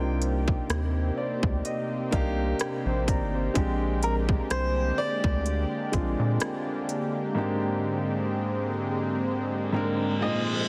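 Over a lightly swung 4/4 trap groove, crisp hats, rim clicks and a hard-clipped kick play from 0.2 to 7.1 seconds in this sensual, late-night contemporary R&B fragment; a clear baby grand piano melody trails tape echo over warm grand piano chords and fills, while a lush, warbling detuned pad pulses under chorus and sidechain pumping, and a rubbery, nasal square bass bounces up front until 6.4 seconds, before an electronic reverse cymbal enters at 9.7 seconds, the whole wrapped in light reverb and a heavily compressed, radio-like sound.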